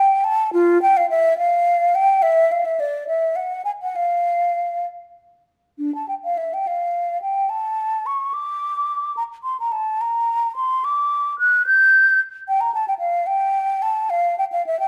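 In a rubato 6/8 lilt at 72 dotted-quarter beats per minute, this introspective, grave excerpt is a baroque-style fantasia for unaccompanied concert flute, tuned to A4 = 436 Hz. The solo flute sits up front with a mellow, hollow, airy tone, vibrato and soft attacks, ranging from D4 to G6, and its opening phrase returns at 5.8 s and runs to the close at 14.9 s. A moderate recital-hall reverb lends the line a sense of space.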